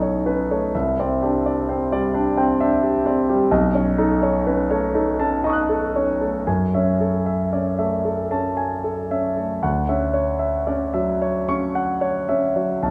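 A grand piano, present and polished, sits up front and carries this hazy, dreamy impressionist classical fragment entirely on its own, cut from a longer piece. Moving in six-eight metre with free, elastic rubato, it spans from deep bass notes up into the high treble. Its harmony drifts through lush extended chords, starting on B9 and slipping to Cadd9, returning to B9 near 3.5 seconds, then settling onto F#m9 and finally Dmaj9 at 9.6 seconds. A generous recital-hall reverb blooms around the instrument, giving the tone a soft halo. The production leans dark and warm, lending the roughly thirteen seconds an intimate, twilight glow.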